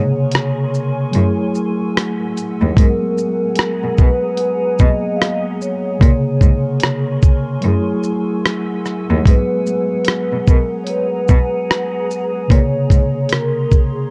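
Melancholic and nostalgic, this swung lo-fi hip hop excerpt pairs a soft-mallet vibraphone melody, metallic and ringing with medium motor vibrato, against a mellow, up-front tine electric piano with cassette-tape character and a blurred, evolving granular pad, while a gritty, compressed sampler-style kit with thumpy kick, hi-hat, rim click and shaker enters at 0.3 seconds and a rich, expressive bowed cello bass with vibrato and portamento joins at 1.2 seconds, all in a dry, dusty tape-worn sound.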